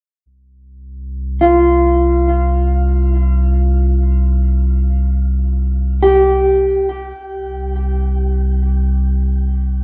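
A slow, straight 3/4 pulse at 52 BPM carries this spacious, melancholic ambient fragment, cut from a longer piece and tuned to A4 = 436 Hz, where a round, deep sine sub bass holds a sustained C2 up front over a C5 harmony while a dark, clean, fingered electric guitar plays arpeggios between F4 and G4 from 1.4 to 7.7 seconds, bathed in tape echo and shimmer reverb, all set in a moderate scoring-stage space and coloured by the worn, warbling pitch drift of old cassette tape.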